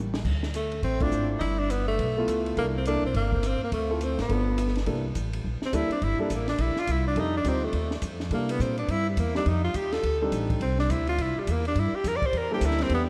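This is an excerpt of small-group swing and bop jazz with a relaxed, playful mood, pushed along by a swinging 4/4 pulse. A compact cocktail drum kit opens with a fill, its dark cymbals, high-tuned snare and punchy kick sounding dry and rounded off at the top, while a woody, pizzicato upright bass sits up front. The band hits an accent at 1.0 seconds as a grand piano enters with an intimate comping voice, its action noise audible. Leading the group, a clear, forceful tenor saxophone carries the melody with vibrato, scooped notes and a smooth top, touched by a delay, and from 4.9 seconds it stretches out into a solo over chords moving between C13 and F13. The whole mix is soaked in a lush hall reverb that gives it a dreamy, spacious glow.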